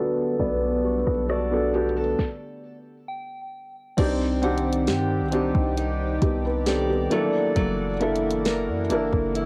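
Dreamy and romantic, this slow contemporary R&B fragment at 67 BPM sets a muffled, felt-muted upright piano with audible action noise and fingerpicked steel-string acoustic guitar arpeggios with tape echo over a lush, warbling detuned pad that pumps with the beat, a deep, boomy 808-style bass, and a soft, up-front electronic drum kit with a fat snare and rim clicks, while a filter sweep opens the first 4.0 seconds, a stop falls at 2.2 seconds, and a pure FM synth bell enters in the background at 3.1 seconds as the chords move from Gmaj9/B to Cmadd9 and F#7alt, all through a dark, lo-fi cassette haze in a modest room.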